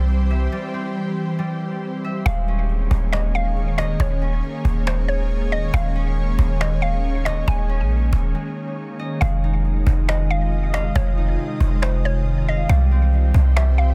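An ethereal, airy detuned pad with ensemble chorus, a ringing, fingerpicked concert harp with tape echo and a deep, boomy 808-style sine bass sitting up front open this melancholic, hazy atmospheric cloud-rap excerpt at 138 BPM in a half-time feel, joined by soft-handed woody cajon in a small room, while a round, warbling vintage FM mallet-like synth pluck carries the melody from 2.3 seconds over chords moving from C through Eb7sus4 and Fm7 back to C, with breaks at 0.5 and 8.3 seconds and a dense, heavily limited modern master.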